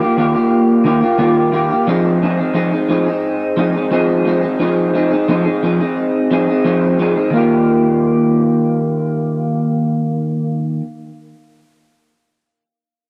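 Nostalgic and laid-back, this short indie pop fragment in Eb major moves at an easy 88 BPM in a straight 4/4. A lone electric guitar, picked through a small old amp, sits up front with a slightly broken-up, compressed tone, colored by lush chorus, vibrato and analog delay as it moves from Ebadd9 to Fm7 and back to Ebadd9 at 7.3 seconds. A moderate spring reverb and dark production surround it until it ends at 10.9 seconds.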